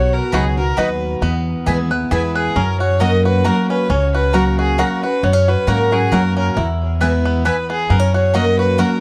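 A joyful, lively bluegrass waltz at 135 BPM in 3/4 with a swung lilt opens with a rich, focused bowed fiddle carrying the melody in tape echo, over bright, full-bodied picked acoustic guitar, a woody pizzicato upright bass up front, and a brief metallic, nasal slide line from a lap resonator guitar in the background that stops by 1.0 seconds. At 0.3 seconds a twangy, percussive banjo joins with arpeggios and a double-strung mandolin adds stabs, both touched by tape echo, as the harmony moves from B through E to F#. The dark, warm, light-reverb production gives this short cut from a longer piece its mellow glow.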